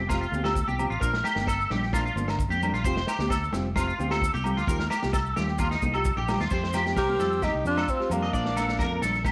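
A twangy, slightly broken-up electric guitar with ensemble chorus and slapback echo rings out bright arpeggios up front in this carefree highlife guitar-band excerpt at 131 BPM in F mixolydian, over a round fingered bass, a dark, boxy fingerpicked parlour acoustic with finger squeak, a punchy vintage drum kit that plays a fill at 5.6 seconds, and background agogo bells, grainy maracas and high-tuned congas, until a breathy, mellow tenor saxophone takes the melody at 7.0 seconds with a raspy, growling trumpet behind it in a small, lightly reverberant room.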